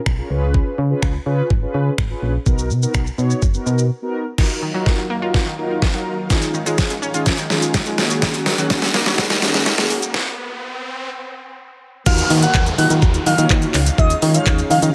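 Dance-pop excerpt in Eb minor at 125 BPM, confident and energetic, built on a produced R&B drum kit with a knocking kick, deep snare and metallic hats up front, a punchy, round FM bass that pumps against the kick, and mellow, brassy synth brass chords with chorus and vibrato. After the bass drops out for a short break at 3.9 seconds, a build-up begins at 4.4 seconds as a vintage string machine with phaser and a warbling analog pluck with digital delay join in the background over a filter sweep and riser effects before a stop at 10.1 seconds. The drop at 12.1 seconds brings the bass back with an airy, dreamy lead melody gliding on portamento, all under light digital ambience.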